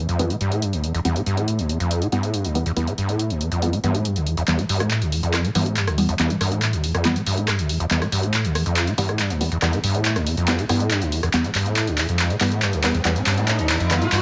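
A screaming acid line opens this dark, driving slice of peak-time techno, its squelchy, resonant sawtooth tone pushed up front with distortion, analog chorus, digital delay and an aggressive filter sweep on fast-attack, decaying notes. An analog drum machine comes in almost at once, punchy and tape-warm, with handclaps, hi-hat and rim clicks in a steady, straight 4/4. A filtered dub chord stab sits alongside, muted and deep, its detuned sawtooth and square-wave plucks given short decays and a mellow haze of phaser, lush chorus and delay. From 4.5 seconds the track moves into a build-up with a drum fill that runs to the end of the cut. An electronic riser creeps in at 12.1 seconds in the background, and the whole passage sits in a moderate stone-room reverb with a dark, rolled-off top end.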